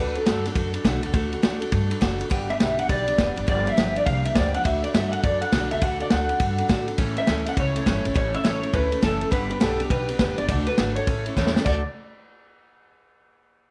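A slightly broken-up, lo-fi electric guitar through a small old amp carries the melody up front, bathed in lush chorus and tape echo; it sounds briefly at the start and then returns at 2.5 seconds. This rowdy, retro rockabilly excerpt swings at 206 BPM in D major, passing through a shaded Gm7 before settling back on D. Underneath, a bright jumbo steel-string acoustic guitar picks out the accompaniment, a woody, thumpy gut-string upright bass plucks the low end, and a vintage kit with a punchy kick and dark cymbals drives from 0.2 seconds, finishing with a drum fill at 11.4 seconds, all in light small-room reverb.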